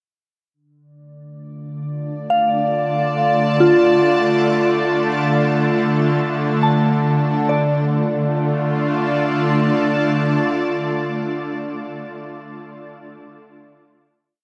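Reflective and melancholic, this short ambient piece floats in free time in D minor, opening on a D minor chord. A shimmering pad enters at 1.5 seconds with sustained, slowly shifting chords, its ethereal, detuned tone carrying an octave-up shimmer, a warbling vintage character and a granular edge, set bright and up front with chorus and its own reverb. At 2.3 seconds a soft synth bell joins with gentle, pure FM arpeggios that strike quickly and decay into a long release, its mellow tone treated with chorus and a diffuse ambient delay. The bell's three slow loops of unequal length drift against each other, so its patterns never quite line up. After a brief opening passage the music settles onto a final chord at 7.5 seconds, and the bell rings on alone after the pad stops, until 13.5 seconds. The whole piece sits in a huge, wet reverb with a long tail, giving it a spacious, suspended atmosphere.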